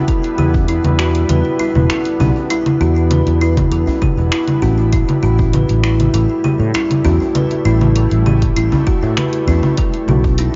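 Meditative and warm, this organic downtempo excerpt moves at 99 BPM in a straight 4/4, set in E minor and cut from a longer piece. A woody, hollow-boxed kalimba sits up front with bright, ringing thumbnail-plucked arpeggios through a delay, while a cloudy granular pad holds sustained chords underneath, its slow attack and long release blurred by built-in reverb and sidechain pumping. A growly, amped fretless electric bass enters at 0.4 seconds, punchy and up front, also pumping against the beat. The rhythm rests on a punchy electronic kick and a layered deep house kit of cabasa, congas, finger snaps and dark hats, both re-recorded in a small room, with a deep, softly played djembe with metal rattles heard distantly in a large room. A dark, metallic bronze singing bowl with slow beating lingers barely audible beneath it all, as the harmony drifts from Em7 to A5 at 4.9 seconds and B7 at 9.8 seconds, framed by light reverb and a soft top end.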